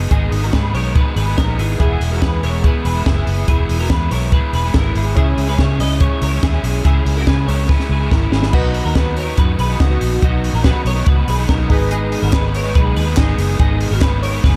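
A bright, twangy twelve-string electric guitar with ensemble chorus spins arpeggios over crunchy overdriven guitar, a round foam-muted fingered bass and an up-front compact cocktail drum kit with a punchy kick and high-tuned snare in this breezy, nostalgic jangly indie pop excerpt, as airy, warbling analog keys drift in at 1.8 seconds, a drum fill at 7.7 seconds leads into a new section, and crisp group handclaps join in the background at 12.3 seconds, all set in a small room.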